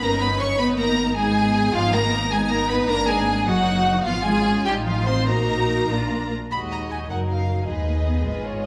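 Urgent and restless, this brief cut from a quick classical-period movement for string orchestra moves in a rubato 6/8 at 104 BPM in Eb minor, with the whole ensemble playing together throughout its 8.7 seconds. Up front, a lush, expressive first violin section carries the melody high above a smooth second violin line, while even, rich violas supply accompaniment and a focused cello section joins the warm double basses on the bass, every section bowed with vibrato. A reverberant hall surrounds the strings as the harmony turns through dark minor and diminished colours before arriving at Eb minor when the second section begins at 6.5 seconds.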